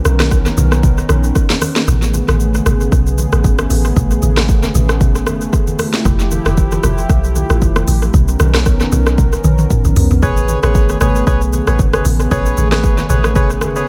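Amapiano in a relaxed, warm mood, this echo-heavy clip cut from a longer piece rides a deep, round log drum bass and an up-front electronic afro-pop kit with a deep kick, sharp snare, smooth hats, rim click, shaker and toms, while low-tuned background congas with tape echo and a mellow, detuned sawtooth pad with chorus sustain lush ninth chords, the kick dropping out at 1.9 seconds before a drum fill at 9.2 seconds ushers in a hollow, ring-modulated organ stab at 10.2 seconds.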